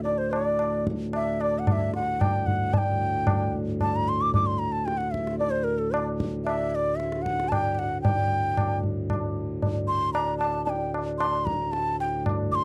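An airy bamboo bansuri sits up front in this serene, meditative Hindustani classical piece, cut from a longer performance in raga Charukeshi on D, with its close-miked, tongued phrases carrying vibrato over a straight 5/4 feel at 113 BPM. Beneath it, a reedy, mellow pedal harmonium holds a full, breathing drone low in the register, while high-tuned tabla with a short ring and a live-room sound joins at 0.1 seconds. The recording has the dry, close character of a 1970s-style studio, touched with light reverb.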